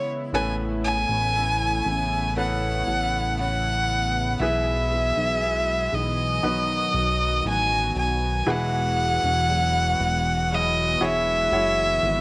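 A light reverb and small room ambience frame this emotional, hopeful pop ballad excerpt at a slow 59 BPM in E major, where an up-front, smooth violin with vibrato and slapback echo carries the melody over a clear baby grand piano, a shimmering chorused pulse-width pad, a fingerpicked steel-string acoustic guitar with audible finger squeak, and a dark, glossy chorused synth bass that enters at 0.3 s, moving from Aadd9 through E/B and B to Eadd9 at 8.5 s.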